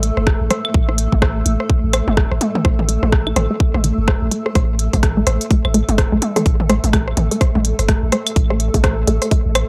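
A deep, punchy sine sub bass with sidechain pumping, a techno kit of smooth hats and rim clicks, and a cloudy, evolving granular pad with built-in reverb open this clinical, sparse minimal techno excerpt at 126 BPM with a swung 16th-note feel over an A5 chord. They are joined by a tape-echoed click kit of claves, rim clicks and toms, a squelchy, bright sawtooth blip pluck riff with phaser and tape echo, and a tight, up-front electronic kick, while a filter sweep runs throughout the dry, gritty recording.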